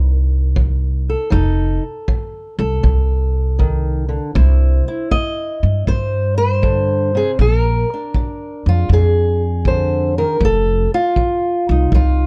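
A growly, thumpy pizzicato upright bass on steel strings sits up front in this laid-back, gritty fragment of acoustic country blues. It swings in 4/4 beneath a boxy, woody, fingerpicked ladder-braced guitar on old strings that carries the melody over F7, C and Bb7 before settling on F5. From 0.6 seconds a tight, distant kick drum played with brushes sits back in a roomy studio space, and the dark production keeps reverb to a minimum.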